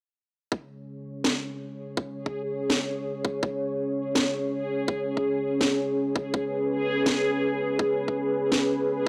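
Half-time drum and bass at 165 BPM, heavy and spacious, with a 59% swing on the sixteenths, cut from a longer piece. A dark analog pad holds sustained chords up front from 0.5 seconds, its detuned sawtooth and triangle tones deepened by a sub octave, softened by a slow attack and colored with chorus and sidechain pumping. An overdriven electronic kick drum sits tight and forward with a high-pass filter and small room ambience, joined at 1.2 seconds by a cracking, layered snare that is also overdriven and up front. From 2.3 seconds a reversed, granular texture swells in on G#4, dreamy and bright with its own built-in reverb. The sound is dry and gritty with a cassette tape character, lifted by light digital ambience.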